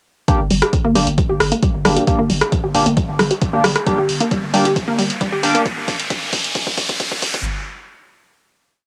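A squelchy, resonant blip pluck drives this dark, industrial peak-time techno build in G minor at 134 BPM, its six-step loop drifting against the bar under a filter sweep, chorus and tape echo. A nasal, wave-folded sync polysynth adds syncopated Gm chord stabs moved in parallel, while a saturated sub bass rumbles between the four-on-the-floor kicks and a punchy analog drum machine plays closed and open hats and rim clicks. The synths, bass and hats pump together, and everything sits in the cassette-tape grit of a small booth. A riser enters at 1.8 seconds, a drum fill starts at 3.9 seconds, and the synths drop out at 5.6 seconds so the drums and riser carry the build to its close.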